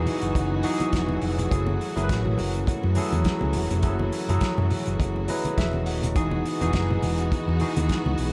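Sultry and danceable, this short disco excerpt moves at 103 BPM in 4/4 with a light sixteenth-note swing, sitting in F# dorian as the harmony shifts from Emaj9 to F#m9 at 1.5 seconds and back to Emaj9 at 6.2 seconds. A barky tine electric piano, lightly overdriven through a combo amp with a subtle chorus, carries the accompaniment up front and steps out with a bright fill from 5.0 to 6.2 seconds. Beneath it, an overdriven fingered electric bass gives a dark, round, amped low end, while a lush studio string section holds bowed chords with focused vibrato. A soul drum kit with a fat snare, tight kick and rolled-off top pumps in a tight booth, joined by very quiet, low-tuned congas played with soft hands on thick, damped skins. A moderate large studio reverb and a dark, warm production tie the parts together.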